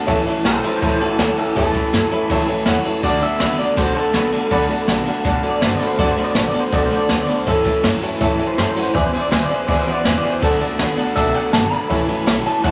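A straight 4/4 pulse from a jazz brush drum kit sits up front, its boomy kick, dark cymbals and snare giving this rowdy, upbeat rockabilly excerpt its push, while a woody, thumpy pizzicato upright bass stays in the background. Two twangy, slightly broken-up electric guitars through a small old amp share the spotlight: one plays a riff shimmering with tremolo, and the other carries the melody from 0.5 seconds. A bright, full-bodied steel-string acoustic guitar and a clear, natural upright piano fill in the accompaniment, all set in a moderate large studio reverb.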